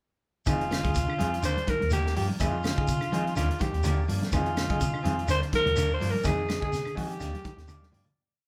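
A tight funk drum kit with a high-tuned snare drives a hypnotic afrobeat groove in a lightly swung 4/4. Beneath it sit a dark, round hollow-body bass riff, a very quiet woody claves time line, soft-handed congas and a grainy shekere. A raspy, growling alto saxophone carries the motif-based melody up front over Fm7 and Ebmaj7, riding above a clean picked guitar ostinato and slightly broken-up, lo-fi funk strumming from a second guitar with spring reverb. The whole band plays live in a large room, fading out from 6.2 seconds before a closing drum fill.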